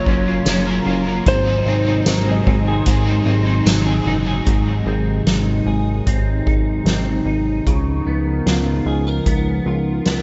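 Dream pop in a dreamy, floating mood, cut from a longer piece. It is built on a soft-mallet drum kit with a boomy kick, hi-hat, fat snare and tambourine, a glossy pulse-wave synth bass, a hollow, flute-like pad and twangy fingered electric guitar arpeggios washed in ensemble chorus and tape echo. A dark, slide-played lap steel carries the melody with tape echo until 3.6 s, a bright, double-tracked overdriven guitar adds crunchy accompaniment with tremolo until 5.0 s, and a ringing steel handpan sits in the background from 2.1 s as the chords move from Gbmaj7 through Ab7 to Db13 under light studio reverb.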